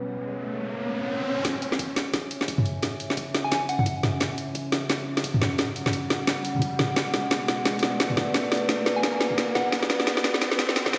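Heard through a big sound system in a bare stone room, this cut from a longer half-time drum and bass piece carries a moderate echo-chamber reverb and a spacious, cinematic mood at 174 BPM in C# phrygian, with a swung sixteenth feel. A dark analog pad holds sustained chords throughout, nasal and detuned with a sub octave, chorus, 12-bit sampler grit and sidechain pumping, while an electronic riser runs beneath it. An eerie, metallic drone on C#4 hums very quietly at the start before the drums arrive at 1.4 seconds: an overdriven, up-front kit with a woody snare, bright hats and toms, layered with a very quiet, knocking electronic kick. From there a build-up and drum fill carry on to the end as a filter sweep moves across the pad, and the chords shift from C# minor to B minor at 7.0 seconds. A soft, warbling FM bell, filtered and delayed, drifts in for brief phrases between F#5 and G#5, first at 3.4 seconds and again near the close.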